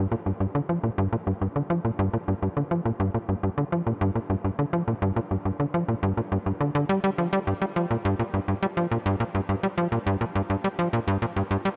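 Expansive and hypnotic, this short ambient cut at 104 BPM in straight 4/4 and G minor, tuned to A4 = 439 Hz, features a lone tight sequencer bass playing from 0.0 to 11.7 s between G2 and G3, its punchy, nasal sawtooth-and-square filter pluck sitting up front with tape echo, all bathed in a huge ambient reverb with a 9.0-second tail.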